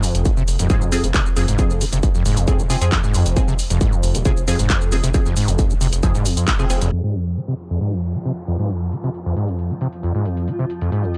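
This excerpt of driving, relentless peak-time techno in F minor at 135 BPM opens at once with a squelchy, resonant acid bass riff drenched in distortion, analog chorus, tape echo and sidechain pumping, alongside a punchy analog drum machine whose handclaps, hi-hat and shaker pump against the beat. Almost immediately a nasal, wave-folded synth bass joins far below, and a distorted, layered kick sits up front in a large-room sound, driving the full drop over a single F minor chord. Muted, detuned dub chord stabs with phaser and tape echo flicker through this section, and the band lands a shared accent just before the drop ends at 6.9 seconds. The kick, low bass and stabs then fall away, leaving the acid riff and drum machine while a faint electronic downlifter descends behind them. From 7.6 seconds a tense, swarming drone with a slow attack and its own reverb fills in the middle register. 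The overall sound is dry, gritty and hardware-driven, with the top end filtered off for a dark, pressing feel.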